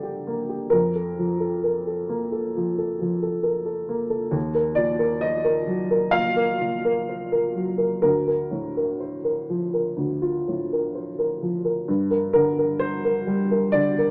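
A woody, natural upright piano sits up front and plays alone through this intimate, peaceful 14.1-second neoclassical minimalist passage, cut from a longer piece in Bb major (tuned to A4 = 441 Hz) at a rubato 65 BPM in 4/4 with uneven beats, ranging from D2 to F5 over chords moving from Gm through Bb5/F, Ebmadd9 and Bbmaj7/D back to Gm, all set in light reverb.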